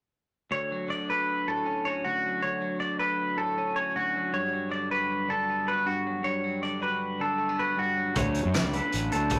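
Bright, twangy clean electric guitar arpeggios carry this intricate, wistful math rock and midwest emo excerpt at 157 BPM in 5/4, sitting up front over a compressed twelve-string electric guitar as both ring with spring reverb through Dmaj7 and Gmaj7 in D major, until at 8.2 seconds a round, fuzz-overdriven fingered bass and a loose indie drum kit with a fat snare, punchy kick and gritty, rolled-off top join for the closing moments of this rough rehearsal-room recording in a moderate studio ambience.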